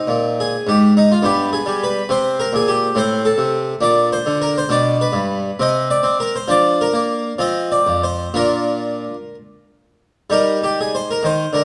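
A solo harpsichord, plucked and brilliant with a full Flemish-style voice on three sets of strings, sits up front in a radiant, serene baroque-style suite movement in Bb major, moving at 60-70 BPM in a rubato 6/8 through chords such as Cm, G, Abmaj9 and Bb/F across a range from F2 to Eb5, its sound carried by moderate recital hall reverb in a brief 11.6-second passage cut from a longer piece.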